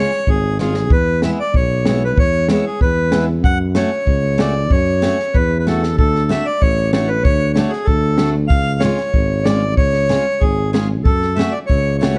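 Dark, lightly reverberant production frames this bouncy, festive alpine folk dance-band excerpt in F# minor at 94 BPM in 2/4, where a reedy, hollow accordion carries the melody up front over warm picked steel-string acoustic guitar accompaniment, a mellow classical-style tuba bass also placed forward, and a compact cocktail drum kit with a high-tuned snare and punchy kick that adds short fills at 0.6 and 5.7 seconds as the chords move from C# through E, F#m and D.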